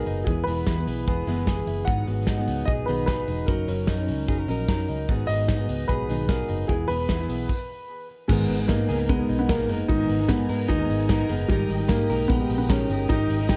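An upright piano carries the melody up front, woody and intimate with its action noise audible, in this bittersweet, restless stretch of jangly indie pop at 150 BPM in G# minor. Beneath it a fingerpicked, full-bodied jumbo acoustic guitar sits in the background, while a bright, compressed clean electric guitar recorded direct picks arpeggios through a harmonic tremolo. A round, punchy, foam-muted vintage bass and a loose small-room drum kit with a tight kick, medium-tuned snare, hi-hat and crash, its top rolled off, keep a straight 4/4 pulse, the drums close to the front. The chords move through E, G#m7 and F#6 before the band stops between 7.5 and 8.3 seconds. It then resumes on G#madd9 and D#, as a mellow string-machine viola pad with soft attack and ensemble chorus enters softly behind at 8.3 seconds. Light reverb and a worn, warbling cassette-tape pitch drift color the whole passage, which is cut from a longer piece.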